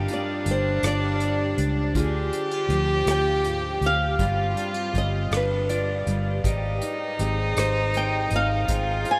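In a straight 6/8 lilt at 54 BPM, this heartbroken, reflective acoustic folk-pop ballad excerpt sets a fingerpicked flamenco guitar melody with subtle chorus and tape echo over a reedy, up-front bowed cello second line with light vibrato and a gut-string tone, a fingerpicked steel-string acoustic guitar accompaniment with finger squeak and ensemble chorus, very quiet ringing thumb-plucked concert harp arpeggios, a dark, round, foam-muted electric bass, and a small-room unplugged drum kit playing hi-hat, tight kick and rim click with bundle sticks from 0.1 seconds, all drifting through chords from G5 and Ddim to G7 and Abmaj7 in a dreamy mix soaked in huge ambient reverb.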